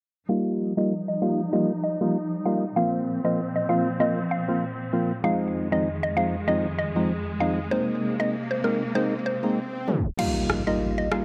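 Dark, warm production with light reverb and a digital ambience gives this short dancehall excerpt a bouncy, sultry feel at 97 BPM in 4/4, with a gentle 56% swing on the sixteenths and tuning set to A4 = 436 Hz. A woody, round FM synth pluck with a mallet-like quality carries the melody, softened by chorus, phaser, delay and a low-pass filter. An up-front, hollow organ stab provides percussive accompaniment, while a lush, bowed studio string ensemble holds distant, vibrato-rich sustained chords through Ebadd9, Bbsus2, Fm7 and Abadd9. A filter sweep runs through the opening stretch, and at 9.2 seconds an electronic swell builds, with a tape stop shortly before the kick-muted electronic afro-pop kit enters at 10.2 seconds with a crash cymbal, rim clicks and an impact as the harmony returns to Ebadd9.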